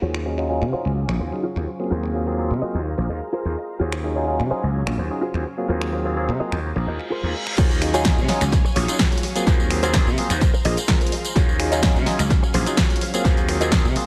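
A light reverb and digital ambience wrap this echo-heavy, filtered disco house cut, with lossy compression artefacts audible in the mix. It is a sensual, funky groove at 127 BPM in 4/4 with a straight feel, in Eb dorian, cycling through Ebm11, Ab13/Eb and Bb9sus4. A growly, overdriven slap bass sits up front while a barky tine electric piano comps and a clean, picked electric guitar plays a compressed riff with tape echo in the background, all pumping under sidechain and a low-pass filter alongside a lush, vintage string machine whose slow-attack sawtooth chords shimmer with phaser and ensemble chorus. A punchy analog drum machine supplies a tape-warm snare with hi-hat, finger snaps, tambourine and crash, re-recorded in a large room. A filter sweep builds until a reverse cymbal rises at 6.9 seconds, and at 7.6 seconds the drop lands as a punchy electronic kick drum enters up front.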